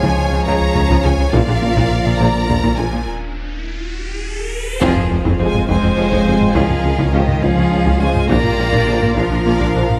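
Brooding and vast, this cinematic hybrid of orchestra and electronics moves at 69 BPM in a straight 6/8 feel in F minor, cut from a longer piece. A close, expressive violin section carries the melody with soft-attack vibrato, while a more distant second violin line, a lush viola section and a cello section fill out the strings beneath. Mellow French horns and trombones hold very quiet sustained chords over a dark, detuned analog pad treated with chorus and phaser. A saturated sawtooth synth bass plays a riff in the background, supported in the low end by a round sine sub bass, and from 0.5 s a bowed double bass section and a vintage-toned tuba join, both very quiet, while hard-stick taiko drums add a band-limited pulse. At 3.1 s the chords drop out into a break as an electronic riser builds, a drum fill leads into a full accent and impact at 4.8 s, and from there a single distant violin, echoed by digital delay, sings above the ensemble. 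A moderate scoring-stage reverb gives the whole arrangement a spacious, hall-like depth.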